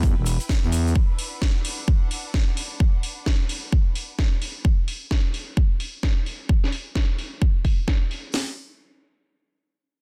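A growling, thick FM bass opens this bass house excerpt up front, its sine-based tone carrying tube saturation and sidechain pumping before it drops away at 0.9 s. Bouncy and swaggering at 130 BPM in 4/4 with 61% swing on the sixteenths, the track rests on an electronic, layered house drum kit with a punchy kick, cracking snare and metallic hats, tape-tinged and re-recorded in a small room, which runs until 8.5 s. A second house kit of hi-hat and snare sits behind it, with low-pass filtering on its cymbals, hats, snare and room. In the opening moments, a very quiet natural acoustic kit and a grainy, mellow tube shaker in the background add texture, while a distant, smooth bowed string ensemble with vibrato fades out over the first few seconds, also pumping with the sidechain. The harmony moves from E minor to B minor before the chords fall away, and the mix has small room ambience and a dense, heavily limited modern master.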